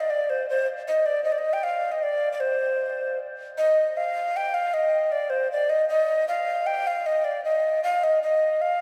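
A lone tenor recorder opens this short medieval fragment, breathy and hollow in tone, its notes beginning with a soft attack and colored by vibrato. It plays by itself for the full 8.8 seconds, moving within a compact range from C5 to G5 at a brisk 155 BPM in a straight 3/4 metre. The mood feels mysterious yet driving, with the music shifting into a second section at 3.6 seconds. Close-miked and up front, the recorder keeps its mellow, wooden character clear even as a long cathedral reverb, lasting around 5.8 seconds, surrounds it with the resonance of a church or concert hall. Cut from a longer piece, the passage offers a brief, atmospheric glimpse of early music.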